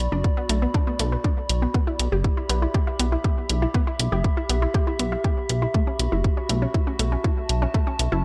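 A punchy, funky analog bass with a ring-modulated, filter-plucked sawtooth edge drives this excerpt of melodic techno at 120 BPM. A warbling, nostalgic, lo-fi tape-like pad and a detuned, round analog pluck playing arpeggios through chorus, cassette tape coloring and digital delay also pump with the sidechain, while an up-front punchy electronic kick and bright electronic hi-hats enter at 0.2 and 0.5 seconds. The mood is driving and dramatic as the chords move from D6 to Em and then F#m7, framed by light reverb in a bright 1980s-style digital production.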